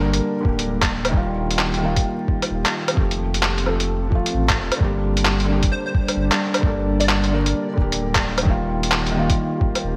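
Future garage at 131 BPM in G minor with a 16th-note swing, nocturnal and melancholic, where a soft, felt-muted upright piano with audible action noise and 12-bit sampler grit sits up front over a warbling, detuned pad and a round sine sub bass, all three pumping to the sidechain, while a muffled, pitched-down sampler kit of handclaps, hi-hat and woodblock with gated reverb rides a thumpy kick, a punchy detuned unison lead with vibrato surfaces briefly from 5.7 to 7.3 seconds, and the bright 1980s-style digital production adds vinyl crackle and a lush hall reverb across the Gm, Ebadd9 and F changes in this excerpt.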